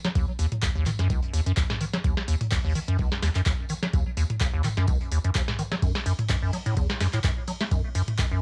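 Driving and trippy, this short acid house passage, cut from a longer piece, rides a gently swung groove. A rubbery, resonant square-wave acid bass sits up front with a dark, plucked filter tone, a fast attack and a decaying tail, coloured by analog chorus, tape echo and sidechain pumping. A booming analog drum machine, also up front, supplies a crisp snare, metallic hi-hats, handclaps, ride cymbal and toms, with a short room sound on the snare, clap and hats. An electronic kick drum enters at 0.2 seconds with a deep, tape-warmed thud, and a very quiet open jazz drum kit joins at the same moment, adding a smooth, shadowy acoustic layer of hi-hat, medium-tuned snare and tambourine in a small room. The bass, drum machine and kick all carry a cassette-tape character, and the whole piece has the light reverb and intimacy of a home cassette recording.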